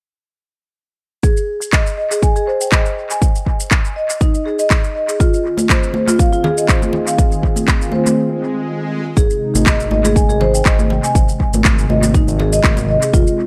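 Afro house with a spiritual, warm mood, cut from a longer piece and set in a gently swung four-four groove. From 1.2 seconds, a close-miked marimba played with medium mallets spins arpeggios through a low-pass filter and analog delay, pumping against a punchy, tape-warm electronic kick that sits up front, while layered electronic shaker and handclaps, re-recorded in a small room, trail their own delay. At 5.6 seconds a detuned sawtooth pad enters with slow-attack sustained chords, softened by chorus, as ringing, hard-hand congas join close and dry with echoes of their own. The harmony moves from Ab toward Fm7 before a short break, marked by an electronic swell. At 9.2 seconds a smooth, gliding synth bass of sawtooth and square waves slides in with portamento, pumping with the groove as the chord settles on Ab. The whole mix carries light reverb and a heavy sense of echo, giving the dry percussion and mellow pad a spacious feel.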